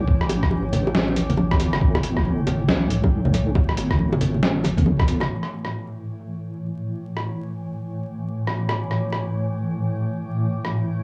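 Set at 138 BPM in 4/4 with a half-time feel and a 62% swing on the 16ths, this deep dubstep excerpt moves at a meditative, weighty pace, cut from a longer piece. A muffled, pitched-down electronic kick thumps with overdrive alongside a sampler-style trip hop kit whose hi-hat, rim click and medium-tuned snare sit up front, crunchy and compressed, as if re-recorded in a small room. Ringing acoustic bongos and congas, close and dry, carry a dub echo, while a deep, dark wobble bass built from square and sine tones pulses low with a chorus sheen beneath chords moving from A5 to Gadd9. Around 5.3 s the bass, hand percussion and kick drop away, leaving the blurred, evolving granular cloud pad, bright and up front with its own reverb, to hover over the sampler kit through to 11.0 s. A cassette-like home recording tone with vinyl crackle and a small room's ambience gives the whole passage a dusty, intimate character.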